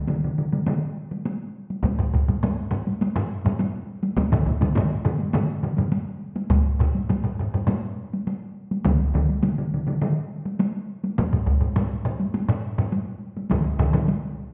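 Solo taiko drums struck with heavy sticks feature in this driving, powerful excerpt of Japanese traditional taiko ensemble music, with a vintage, band-limited tone sitting up front. They sound briefly at 0.1 seconds, drop out, and return at 4.3 seconds to carry on to the end. Alongside them, one taiko ensemble plays hard sticks in a live room from the very start, while two more ensembles join at 1.8 seconds. Of those two, one adds its own aged, narrowed hard-stick sound and the other plays with heavy sticks, compressed and saturated. The drumming moves at a steady 103 BPM in a straight 4/4, and a wet recital-hall reverb gives the massed drums a resonant space.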